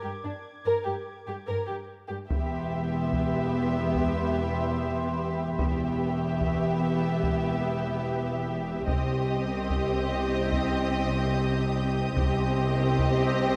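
Ominous and tense, this cinematic suspense cue, cut from a longer piece, opens with an expressive violin section carrying the melody over a focused cello section, while a dark, woody violin section hovers high in the background. At 2.3 s a smooth, close second violin line, a lush, distant viola section, a soft-attacked double bass section and hard-stick taiko drums, compressed and saturated, join in, and the harmony shifts to C minor at 8.9 s. Vibrato colours each string part, and a moderate scoring-stage reverb gives the ensemble a roomy depth.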